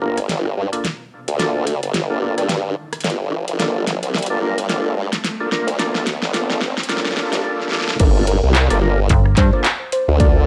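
A saturated, detuned formant-sweep wobble bass sits up front in this gritty, playful glitch hop excerpt, grounding a Gm9 harmony with a swung sixteenth-note feel. Above it, a percussive tonewheel organ plays lightly overdriven stabs through a slow rotary speaker, with chorus vibrato, vintage sampler grit and sidechain pumping. A pop drum kit with a fat snare, metallic hats, handclaps, rim clicks and crash cymbal plays fills through the build-up, as a riser and swell in the background and a filter sweep raise the tension toward the drop at 8.0 seconds. There a punchy electronic kick enters alongside a woody, dark wave-folded pluck melody with a moving notch, and a snappy FM bass with a digital edge jabs in briefly at 9.1 seconds. The home cassette recording has light reverb, and tape colours the drums and pluck.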